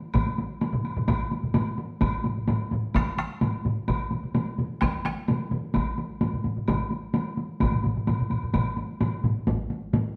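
Powerful and ceremonial, this short cut from a longer Japanese traditional taiko piece in straight 4/4 sets hard-sticked solo taiko drums up front in a small room against three taiko ensemble parts, one heavy-sticked, close and dry, one hard-sticked, close and in the background, and one heavy-sticked in a small room, with a woody woodblock sounding distant from a large room, all played live together in a stone room with a wet reverb.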